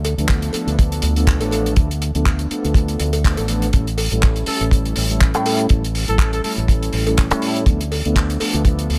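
A bright, up-front fingered electric bass with an envelope filter, a dry, damped 70s drum kit with handclaps and hi-hat and a saturated, compressed cowbell in the background open this sunny, feel-good nu-disco excerpt at 122 BPM with a swung sixteenth feel. They are joined by a tight, rolled-off kick drum up front and a round, dark sawtooth synth brass with filter sweeps, chorus, delay and sidechain pumping over Dm6 and A7 chords, while a smooth-topped trumpet section with light vibrato and delay briefly holds an A4 from 4.5 to 6.5 seconds in a small room.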